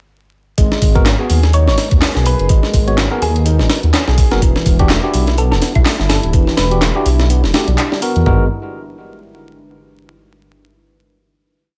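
A swaggering, gritty breakbeat piece at 125 BPM in 4/4 with a swung sixteenth-note feel, it opens at 0.6 seconds straight into the drop on a G#m9 chord, with a compressed, pitched-up sampled break up front: a thumpy kick, high-tuned snare, hi-hat and toms, tape-warm and looped with edits. An overdriven house kit adds a layered machine layer of closed and open hats and handclaps, re-recorded in a large room, while a deep, rumbling detuned saw bass sits up front with a funky syncopated line. A clean tonewheel organ through a stopped rotary speaker and tube saturation repeats a 16-step sequence with digital delay, and a bright tine electric piano joins with close-voiced syncopated stabs. From 1.5 seconds a moody, warbling vintage pad holds sustained chords in the background with chorus and sidechain pumping, as a round, FM thumb-piano-like pluck with a telephone filter plays short answering phrases until 7.0 seconds. 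The harmony moves to Em9 at 4.4 seconds and returns to G#m9 for a final chord at 8.3 seconds, all over a layer of vinyl crackle and faint mains hum.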